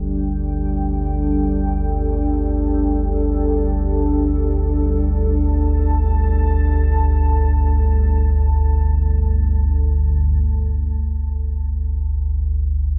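This cavernous dark ambient drone opens at 0.0 seconds with a deep, rumbling drone in the low register and a moody, warbling pad of sustained chords above it, both rising with slow attacks and floating in free time. The drone sits up front, ominous and dark, its triangle and sawtooth tones smeared by lush chorus and its own reverb. The pad has a vintage, detuned quality, with unison sawtooth voices, a sine sub octave and chorus lending it a hazy shimmer, and the first chord is a G5. A filter sweep moves through the drone across the opening stretch. At 10.4 seconds the pad fades out on its long release, leaving the drone to hold alone until 13.0 seconds. The production is dark and enveloping, bathed in a huge reverb with an 8.1-second decay, and the recording is cut from a longer piece.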